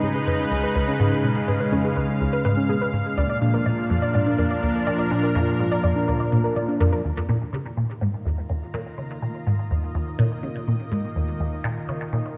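A straight 4/4 pulse at 124 BPM drives this expansive, cosmic stretch of sequencer-led ambient space music, cut from a longer piece and moving from Db7 to Bb and then to Ebsus2. A juicy, squelchy blip pluck carries a low riff up front through phaser and delay, while a lush, thick unison pad holds sustained chords with chorus. A soft, round pluck spins dark arpeggios under a filter sweep until 7.0 seconds, when a fade-in swells the pad, all set in a reverberant concert hall with a cassette tape character.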